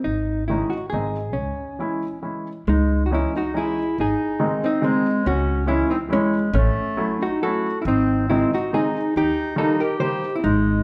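A hollow-body jazz guitar, dark and clean, opens this bittersweet, whirling musette waltz at 139 BPM in C# harmonic minor, carrying a rubato melody over pizzicato upright bass and a woody, intimate upright piano whose action noise can be heard, with a smooth classical clarinet entering at 2.7 seconds as a second line, all in a moderate recital hall reverb in this fragment cut from a longer piece.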